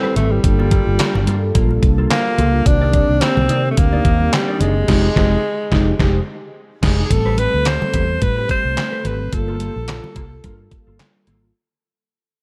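A breathy, subtoned alto saxophone leads this danceable early-eighties boogie funk excerpt from the first moment, up front with jazz-style vibrato over round, sawtooth synth brass with chorus, a dark, compressed electric guitar riff tucked in the background, and very quiet, bright congas. At 0.2 s a punchy, foam-muted fingered bass and a detuned 8-bit drum machine join, the machine's thumpy kick, snare, hi-hat, handclaps and crash carrying gated reverb and a tape-warm, small-room character, while the funky groove moves at 108 BPM with swung sixteenths through Gm9, Cm9 and Fm9. The band hits an accent from 4.9 s, and from 7.1 s the harmony turns to Am9 as the music begins fading out inside a digital ambience.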